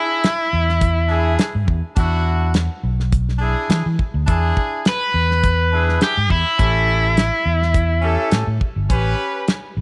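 Light reverb and a studio ambience give this short cut from a longer soul blues piece a close, lively sound. The mood is rollicking and soulful, at 104 BPM in 4/4 with a straight-eighth feel and a slight swing on the sixteenths, set in E mixolydian and moving from E7 to A7 at 6.6 seconds. A cranked stack guitar carries the melody, overdriven and picked with a bright, up-front edge, playing a short opening phrase and returning at 4.9 seconds. Behind it, a horn section holds sustained chords with light vibrato and a punchy, present pop-style attack. A damped 70s drum kit sits up front with a dry, medium-tuned snare, a tight kick and hi-hat. A fingered electric bass, dark, amped and round, enters at 0.5 seconds and anchors the low end.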